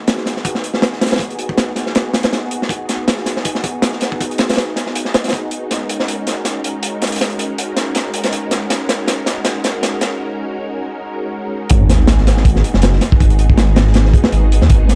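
Drum and bass with a jungle lean, this atmospheric, nostalgic excerpt sets silky vintage string-machine chords with ensemble chorus over a crunchy, gritty breakbeat kit with a tight kick and rolled-off top, building through a drum fill and brief break until a deep, rumbling detuned saw bass drops in at 11.7 seconds alongside a very quiet electronic sub drop, all in a dark, small-room mix.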